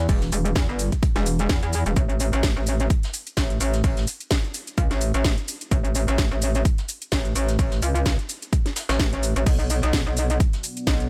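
An aggressive, saturated metallic wobble bass opens this bouncy, swaggering bass house excerpt with sidechain pumping, joined almost at once by a punchy, up-front electronic kick, a house kit with a cracking snare and metallic hats, crash and shaker, and a distant, very quiet brush kit in a swung groove, before a deep, dark ambient pad with sidechain pumping slips into the background at 10.6 seconds over a Bm chord in a dry mix.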